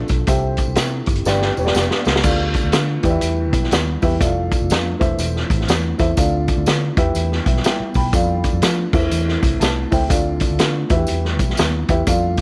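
A swung 4/4 groove from a punchy, up-front vintage drum kit with dark cymbals and a round, foam-muted electric bass drives this urgent 1960s-style soul cut, as a woody, slightly detuned upright piano comps alongside glassy, ethereal glass harmonica chords and a jingly tambourine in the background, with a drum fill at 1.3 seconds and a short piano fill at 9.4 seconds.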